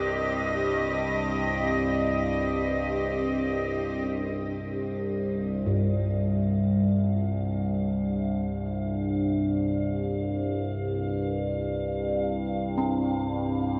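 Soaked in a huge, cavernous reverb and dulled by cassette tape, this excerpt of dark ambient drone drifts in free time in C minor with an ominous weight. An up-front drone of moving, resonant overtones with ring modulation anchors the low end, while a rich, earthy chamber cello section bows sustained chords with light vibrato until 4.1 seconds, and metallic, bronze gamelan-type bossed gongs beat softly in the background with vintage, band-limited arpeggios. From 4.7 seconds an icy, crystalline glass pad fades in high above, airy and detuned with shimmer reverb, as the harmony settles from C minor onto a bare C fifth.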